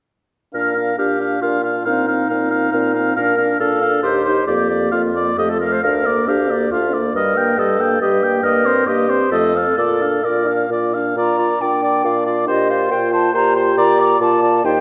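Lively and graceful, this quick classical-period movement for wind quintet in Bb major moves at 137 BPM in a rubato 3/4, with a warm, close oboe carrying the second line over a clear clarinet and smooth-topped French horn, a dark, up-front bassoon anchoring the bass, and a mellow, hollow silver flute entering with the melody at 11.2 seconds, all bathed in the wet reverb of a recital hall in this excerpt cut from a longer piece.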